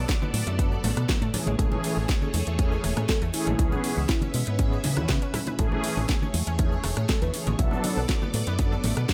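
This groovy, feel-good nu-disco cut in A major opens on a lush, vintage string machine holding slow-attack sustained chords with phaser and ensemble chorus. A bright, detuned analog pluck arpeggiates in the background, and a fingered electric bass, run through an envelope filter, sounds direct and amped. Everything moves at 120 BPM in a straight 4/4. A punchy, up-front electronic kick drives the groove with a house kit of cracking snare, metallic hats and rim clicks, while a tube shaker and congas sit distant in a large room. A smooth, detuned sawtooth pad enters at 0.6 seconds. At 1.6 seconds a soft, round, octave-layered synth lead arrives with vibrato, chorus, phaser and delay, dark and set back in the mix. The string machine, pad, pluck and bass pump with sidechain compression over a Bm7, Amaj7 and C#m7 progression, all bathed in a digital ambience.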